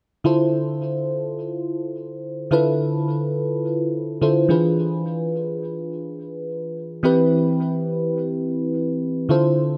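Pop in free time, this short piece cut from a longer work carries a nocturnal, bittersweet mood in D dorian, tuned slightly low with A4 at 439 Hz. A single bell-like FM electric piano plays solo from 0.2 to 9.8 seconds, ranging from D3 to C5 and sitting up front in the mix. Its sparkling tone has a fast attack and decaying notes, with a noise layer, and it is colored by a phaser and a subtle chorus. The harmony moves from Dm9 to E7b9 at 4.5 seconds, then settles on Cmaj7/E at 7.0 seconds. A moderate plate reverb with a 2.5-second tail surrounds the instrument.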